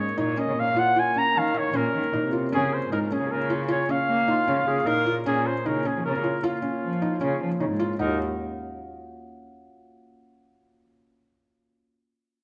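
Contemporary chamber music in 7/4 at 154 BPM and Eb minor, hypnotic and urgent, this excerpt from a longer piece sets a vibrato-laden flugelhorn with scooped notes up front over ethereal glass harmonica chords, felt-muted upright piano arpeggios with audible action noise, and a veiled, bowed con sordino cello bass with portamento. A distant, soft-attacked clarinet adds a second line from 4.3 s, while a delicate, bell-like celesta texture enters at 3.7 s and lingers alone until 10.7 s. The recital hall reverb is wet, and the harmony moves from Bbm to Db6 before settling on Ebm at 8.0 s.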